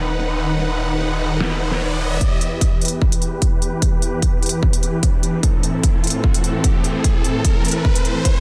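A growling, saturated growl bass opens this aggressive, heavy wobble dubstep excerpt, its detuned, formant-filtered tone wobbling bright and up front on a low D#1 before it drops out at 2.2 seconds. At 149 BPM in 4/4 with a half-time feel, the music sits in E harmonic minor, moving from B/D# to Em and then Am. Huge, lush supersaw chords built from detuned sawtooth unison voices sustain throughout, pumping from sidechain compression and shaped by a low-pass filter that sweeps through the build-up. A layered, tape-warm dubstep drum kit supplies a deep snare and crisp hats, while an electronic riser enters at 0.4 seconds and runs to the end. From 2.2 seconds a punchy electronic kick drum arrives up front, driving the build-up to the end. Light reverb surrounds the mix, and the master is dense and heavily limited in a modern style.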